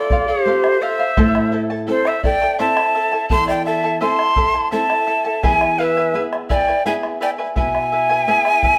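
Andean folk in a wistful, melancholic 3/4 at 84 BPM, this short excerpt sets an airy, end-blown cane quena with vibrato and a soft, chiffy attack up front over a breathy bamboo pan flute second line, a bright, shimmering fingerpicked charango with double strings, a fingerpicked flamenco guitar and a deep, dark bombo entering at 0.1 seconds, all played live together in a stone room with moderate reverb as the chords move from F to Am to E.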